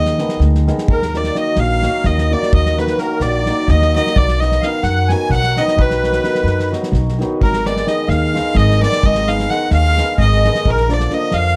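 Bittersweet and virtuosic, this Balkan wedding-band folk cut in a fast 7/8 at 258 BPM in Ab dorian sharp4 sets a biting, nasal bowed fiddle melody up front over a ringing hammered dulcimer, a woody, thumpy pizzicato upright bass on gut strings and a small-room acoustic drum kit of tight kick and bundle-stick snare, with a reedy, shimmering musette accordion joining as a second line at 0.9 seconds, all under light reverb in a dark, warm mix as chords move from Abm through Ebm, B and back to Abm before landing on Bb.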